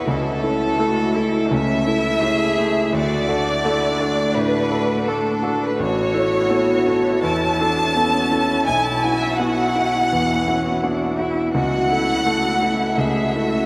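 A violin section, a cello, a concert grand piano and an analog pad all sound together from the very start of this short cut from a longer neoclassical piece for piano and strings, opening on an A/C# chord. The mood is intimate and hopeful, moving at 84 BPM in 4/4 with a rubato feel, in A major tuned to A4 = 437 Hz. Up front, the chamber violin section carries the melody with a rich, focused, bowed vibrato tone. The bright, brilliant piano accompaniment reaches down into deep bass. Further back, a single distant cello plays a second line, and a swirling, nasal pad of detuned sawtooth and sine tones holds sustained chords through phaser and chorus. The harmony moves from A/C# through D, Aadd9 and Esus2/B before returning to A/C# at 11.5 seconds, all bathed in a wet cathedral reverb that places the ensemble in a vast, echoing space.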